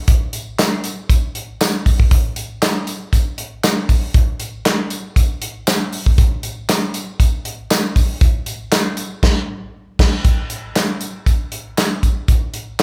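Funk at 118 BPM in a straight 4/4, this short cut from a longer piece has a smooth, danceable mood. A modern studio drum kit sits up front from 0.1 s to 12.8 s, its acoustic sound marked by bright cymbals, a medium-tuned snare and a tight kick, with crash, hi-hat and handclaps rounding out the pattern. A jingly tambourine, close and dry, plays in the background across the same span. The whole band hits an accent between 9.2 and 10.2 seconds, just before a new section begins at 10.2 seconds. Light reverb gives the feel of a group playing live together in one room.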